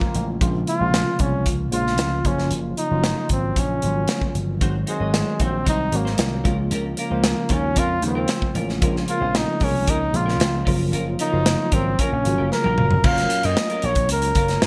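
A straight 4/4 groove at 114 BPM drives this breezy, urban slice of polished 1980s jazz-funk pop, built on a punchy, up-front studio drum kit in a pumping room with gated reverb, and a round, amped slap bass that enters at 0.2 seconds. A worn, slightly out-of-tune tine electric piano with ensemble chorus supports a warm, close-miked flugelhorn melody with light vibrato, while a compressed electric guitar riff with lush chorus slips in behind at 4.6 seconds. The chords move through Bbm7, Gbmaj7, Ab7 and Db6, a drum fill at 12.5 seconds leads into a new section, and the piece sits in bright, digital 1980s-style production.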